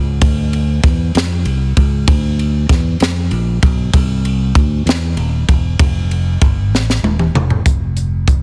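A slow, straight 6/8 sway carries this soulful, hopeful gospel excerpt, cut from a longer piece. A fingered electric bass opens at 0.0 seconds with a round, direct-amped tone, moving through a low register that reaches down to its deepest notes. The acoustic fusion kit joins at 0.2 seconds, bringing hi-hat, ride, a high-tuned snare, a punchy kick and toms in a polished, airy studio room with dark cymbals. Both parts sit up front, and a drum fill from 6.7 to 7.7 seconds rounds off the phrase. The sound is dry and heavily compressed, giving the pair a dense, radio-ready presence.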